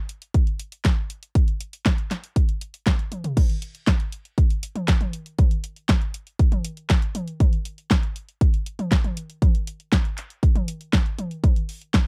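A house drum kit of hi-hat, handclaps, snare, toms and crash opens this bittersweet, melodramatic italo disco excerpt at 119 BPM in a straight 4/4, joined at 0.3 s by a punchy, up-front electronic kick alongside the kit's layered, produced snare, with an accent at 2.9 s and a drum fill at 3.1 s leading into a new section, all captured in a dry, close 1970s-style studio sound.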